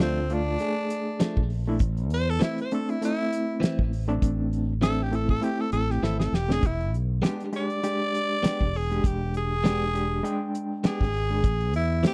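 A straight-eighth groove in 4/4, with a light swing on the sixteenths, drives this mournful, soulful soul-blues passage cut from a longer piece. A damped 1970s drum kit sits up front with a fat snare, tight kick and hi-hat, and breaks into a short fill from 6.0 to 6.6 seconds. Underneath, a dark, round fretless electric bass anchors the low end, while an overdriven, reedy electric piano played through a combo amp supplies accompaniment with a fast tremolo. A clean, direct-recorded electric guitar adds bright, compressed, picked stabs colored by tape echo. Over it all, a growling, raspy tenor saxophone carries a jazz-style solo melody as the harmony moves from Dm to Am, then to a tense E7#9 at 6.6 seconds before settling back on Am. The sound is a dry, close 1970s-style studio recording with a touch of studio reverb.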